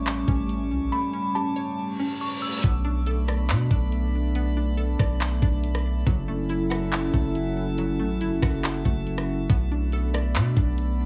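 Atmospheric cloud-rap with a melancholic, spacious mood, this excerpt of a longer piece rides a half-time trap drum kit with a knocking kick, bright hats, handclaps and rim clicks, up front beside a deep, mellow 808-style bass that holds long notes. A moody, detuned analog pad with chorus and sidechain pumping sustains chords under a hollow, bouncy square pluck playing arpeggios in the background and a calm texture of drifting glass harmonics. A crystalline FM bell melody with tremolo and digital delay sounds only until 2.6 seconds, where a reverse cymbal leads into the second section and the harmony moves from A7 to Bm7, all set in a light digital ambience.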